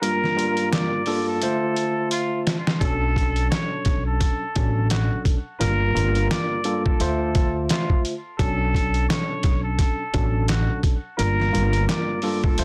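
A gritty, pitched-down sampler drum kit sits up front in this dark, reflective boom-bap hip-hop excerpt, its thumpy kick, medium-tuned snare, hi-hat and handclaps carrying a swung feel, with a drum fill from 2.1 to 2.8 seconds closing the opening break. A worn, slightly out-of-tune tine electric piano, lightly overdriven with a cassette-tape tint, lays down the minor ninth chords, and a woody, growly pizzicato upright bass enters at 2.8 seconds. Over them, a distant, roomy trumpet with a straight mute plays a nasal, breathy jazz-style solo line with light vibrato, scooped notes and digital delay, all within a dense, heavily limited modern master.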